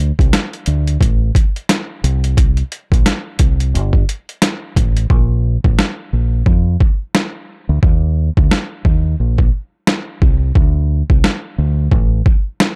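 A dark, round, punchy fingered electric bass opens this nostalgic, confident boom-bap hip-hop cut from a longer piece, joined at 0.2 seconds by a gritty, overdriven sampler-style drum kit with a thumpy kick, medium-tuned snare and swung hi-hats that drop out at 5.1 seconds, both parts up front in a dry mix until the bass stops at 12.2 seconds.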